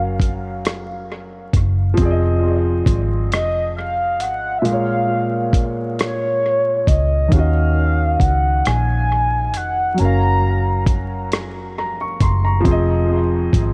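Late-night and yearning, this six-eight R&B excerpt places a mellow, horn-like sawtooth synth lead with soft attack, filter sweep, chorus, vibrato and dub echo over a polished baby grand piano sharing that echo, a dark, round, foam-muted fingered electric bass and a gritty, compressed sampler-style soul kit whose thumpy kick, hi-hat and rim click enter at 0.2 seconds, set in light reverb and vinyl crackle until the lead drops out at 11.3 seconds.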